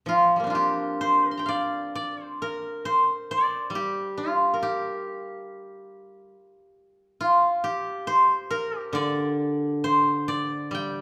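A moderate recital-hall reverb, with a decay of about 1.4 seconds, surrounds this brief recording and lends it an airy sense of space. It is a contemplative, elegant piece of Chinese traditional music, heard here as a short passage cut from a longer work. A single steel-string zither plays solo from 0.1 to 11.0 seconds, placed up front in the sound. Played with fingerpicks, the acoustic instrument rings with a mellow yet silvery tone across a range from D3 to C6. The rubato feel in 4/4 gives the phrasing a free, unhurried quality that suits the reflective mood.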